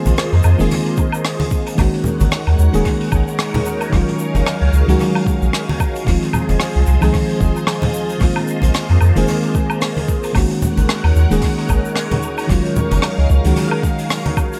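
A deep, round sine sub bass sits up front in this smooth, relaxed sunset chillout cut at 112 BPM in Eb dorian with swung 16ths, beneath a dark, warbling vintage FM electric piano with chorus and tape echo, silky slow-attack string-machine chords treated with phaser and ensemble chorus, an airy brushed jazz kit of hi-hat, rim click, shaker and woodblock alongside bright, low-tuned congas in the background, both carrying dub echo, and a soft, tape-toned electronic kick that joins at 1.0 s, set in an echo-heavy mix with light reverb as the harmony moves through Bb9sus4, Ab9sus4, Ebm11/Gb and Fm7.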